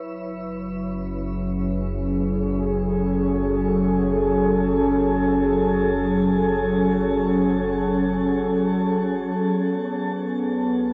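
A warbly, tape-like pad of detuned, nostalgic sustained chords opens this melancholic, spacious ambient excerpt in free time, up front with chorus and a dark lo-fi glow, joined at 0.6 seconds by a deep, ominous rumbling drone far beneath it, both bathed in a vast shimmering reverb and worn cassette pitch drift as the harmony moves from F#m9 to B7(no3) at 9.4 seconds.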